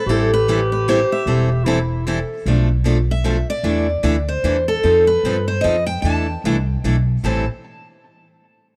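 This dry, close recording has the intimate sound of a 1970s studio, with the players up front. It is a bittersweet, swinging jazz manouche piece in 3/4, cut from a longer performance. A bright, concert-toned steel-string guitar carries the melody in a high register, with tape echo trailing its picked notes. A breathy clarinet with light vibrato, soft attacks and scooped, whispered notes adds a vintage second line beneath it until 2.5 seconds. A boxy parlour guitar supplies the accompaniment with audible finger squeak, while a woody, thumpy pizzicato upright bass on gut strings anchors the low end. The harmony moves from Am9 through Bm7b5, E7sus4, F9 and back to E7sus4 before settling on Am7 at 7.2 seconds.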